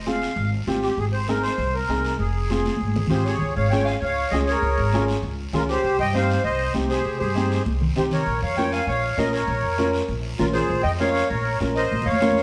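Driving and danceable, this cumbia excerpt moves at a brisk 198 BPM in straight 4/4, with an up-front, woody pizzicato upright bass and a reedy, sweet accordion carrying the melody over chords of Fm, Ab, Db, Cm and Bbm. A polished upright piano fills in the accompaniment, while close, dry congas struck with hard hands sit in the background alongside a raspy guiro. From 3.1 s a growling, gritty clarinet adds a distant, jazz-style second line with scooped notes and subtone, and the band plays live together in a stone room with wet reverb.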